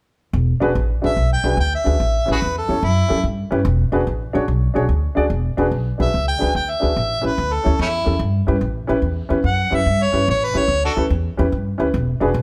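An overdriven harmonica takes a gritty, soulful jazz-style solo full of vibrato, tongue slaps and scooped notes from 1.1 to 3.2 seconds and again from 6.0 seconds, over a swinging 145 BPM electric blues shuffle in 4/4, where a woody pizzicato upright bass and a warm upright piano move between E7 and A7 in a lightly reverberant room, in this cut from a longer live band performance.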